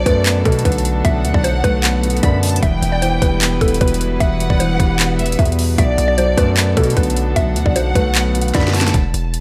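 Dark and hard-hitting, this half-time trap hip hop excerpt at 152 BPM moves from Bm7 to Em and back, driven by an up-front trap kit with a hard-clipped kick, sharp snare, metallic hats and handclaps, a heavy distorted 808-style bass, a woody mallet-like synth pluck melody bathed in chorus, phaser and delay, a deep-voiced grand piano, lush violins with portamento, and biting gut-string chamber strings in the background, before a drum fill at 8.5 seconds gives way to a brief break.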